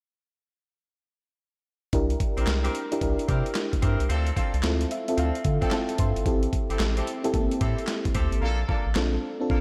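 A swung 16th-note groove at 111 BPM drives this confident, slick new jack swing R&B excerpt, where a gritty, overdriven sampler-style drum kit with thumpy kick, snare, handclaps and hi-hats that fall silent at 8.4 seconds sits up front beside a round, deep analog bass and a full-bodied FM electric piano with tremolo and slapback echo that plays a fill from 4.6 seconds, while a distant, roomy jazz-style horn section adds stabs from 2.4 seconds over C7, Dm7, Am7 and Bbmaj7 chords in light digital reverb.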